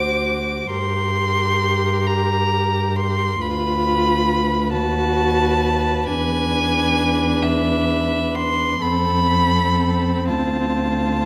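A close, veiled muted violin sings the yearning melody up front with vibrato and a soft attack, over a second muted violin with a smooth top in the background, a dark muted viola accompaniment with light vibrato, and a con sordino cello bass also up front, in this solemn, slow romantic string-quartet movement at 44 BPM in 6/8 with uneven, rubato beats, cut from a longer piece and set in moderate scoring-stage reverb.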